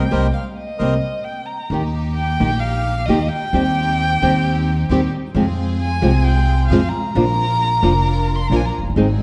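This melancholic, dramatic tango fragment in Eb major opens with a band accent: a dark, reedy bandoneon sounds briefly until 0.9 seconds over a fingerpicked nylon-string guitar with old strings and a growly, pizzicato upright bass that sits up front. At 1.7 seconds the bowed violin takes a solo full of vibrato and portamento, while a lush, clear symphonic string section adds stabs touched with slapback echo. The rubato feel at 132 BPM unfolds in a moderate concert hall reverb over chords moving from Eb through Cm/Eb and Fm to Bb.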